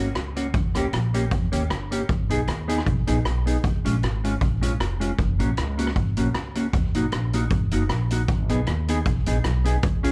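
A mellow electric guitar sits up front in this bouncy, cheerful ska excerpt, its dark, clean, fingered tone dressed in a lush chorus and a slapback echo as it carries the accompaniment. Beneath it, an acoustic upright bass played pizzicato gives a warm, woody, growly voice from its steel strings. A street-band drum kit joins at 0.2 seconds with hi-hat, rim click and a boomy kick, its warm small-room sound mid-forward and up front with a rolled-off top. The groove moves at 155 BPM in 4/4 with a light swing on the eighths, and the harmony runs from F# through D#7, G#m and C# before returning to F#, D#m and G#m. Light reverb and a dark, warm production wrap the whole fragment, which is cut from a longer piece.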